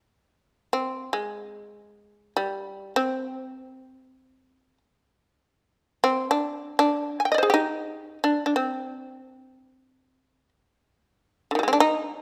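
A lone shamisen carries this brief fragment of Japanese traditional chamber music, entering at 0.7 seconds and playing through to 12.2 seconds. Its plectrum-plucked tone is bright and percussive, with a buzzing edge that suits its fretless voice, and it sits up front in the mix. The playing moves in free time across a range from D3 up to Ab5, drawing on the hirajoshi scale. A moderate recital hall reverb surrounds the instrument, lending the notes a sense of space. The mood is solitary and austere, as befits a passage cut from a longer piece.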